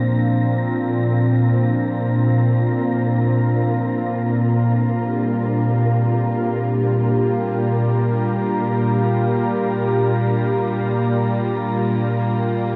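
A smooth, warbling analog pad with a soft attack and subtle chorus sits up front, holding sustained chords on Bb throughout this peaceful, luminous ambient passage in free time, while a tense, string-like bowed drone with vibrato and a breathy, wind-like tuned noise texture hover beneath in their own reverb, all set in a huge, dark reverberant space lasting 12.8 seconds.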